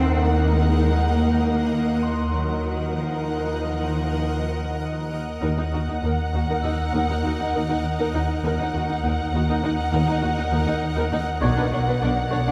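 An uneasy, ominous suspense film cue in 5/4 opens with veiled, con sordino violin sections, one carrying the melody and a studio section playing a second line, over muted violas, lush cellos and double basses, a deep sine sub-bass drone, a shimmering, ethereal pad with chorus and built-in reverb, a woody, dry marimba riff and a faint, bright harp, all heard from further back in a wet concert hall as the harmony shifts at 5.4 s.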